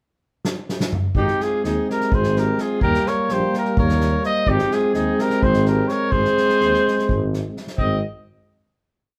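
Virtuosic and wild, this short Balkan brass band piece in 7/8 opens with a fat-snared, punchy-kicked drum fill played with bundle sticks from 0.4 seconds. At 1.1 seconds clear and mellow euphoniums enter holding chord tones, and from 1.2 seconds a warm, lightly vibrato trumpet leads with a roomy, up-front motif-based melody over a bright, soft-attack alto saxophone harmony line mostly in thirds and a smooth-topped tuba on root and fifth bass, all played live in one room before a final chord at 7.8 seconds.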